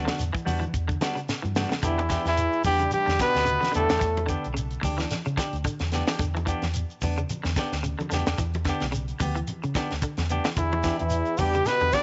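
Afrobeat with an intense, hypnotic feel, this excerpt rides a swung sixteenth-note groove in 4/4 over Em9 and then Em7 harmony. A tight funk drum kit sits up front with a dry, high-tuned snare and tight kick, joined by ringing, hard-handed congas and a grainy shekere placed close but in the background, while a dark, foam-muted fingered bass gives a round, punchy low end. Two clean semi-hollow electric guitars weave through the groove: one picks bright arpeggios with a subtle chorus, the other plays fingered stabs. After a drum fill from 1.3 to 1.8 seconds, the horns enter, led by a trumpet up front with vibrato, scooped notes and tape echo, shadowed by a brilliant trombone and a mellow, distant trombone section on second lines. The horns drop out at 4.3 seconds and return at 10.6 seconds, all within a small room reverb with a rolled-off top.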